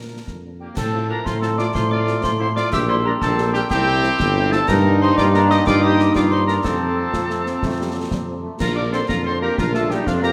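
A mellow tuba sits up front in this festive, spirited military-style march for wind band, carrying the bass with light vibrato in a straight 6/8 at 123 BPM. Above it, a distant cornet with vibrato sings the melody, joined by a clear woodwind section and a pure, crisp-edged piccolo on second lines, while a bell-like glockenspiel struck with soft plastic mallets rings out close and dry from 0.6 s to 8.4 s. A dark, very quiet French horn section fills in the accompaniment, and a trombone section with light vibrato holds sustained chords underneath. Concert snare, bass drum and clash cymbals with dark cymbal tone drive the march from a close, dry position. The harmony starts in F major, moving through chords such as F/A, Gm/Bb and C before settling into Bb major, and at 8.6 s a euphonium with vibrato enters in the background for the closing phrase. The recital hall reverb gives the horns, cornet and euphonium a roomy glow in this excerpt cut from a longer piece.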